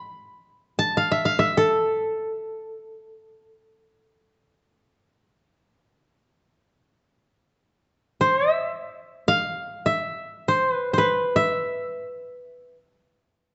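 A solo koto opens this meditative, austere passage of Japanese traditional chamber music, plucked with fingerpicks and sitting up front with a dry, woody tone. Its phrases unfold in free time within a range from A4 to B5. The instrument stops at 3.8 seconds, and a stretch of silence hangs in the recital-hall reverb before it returns at 8.2 seconds and carries on to 13.4 seconds. The overall production is dark and warm, its highs rolled off, so the plucked notes feel close and unadorned. Cut from a longer piece, the moment feels spare and contemplative.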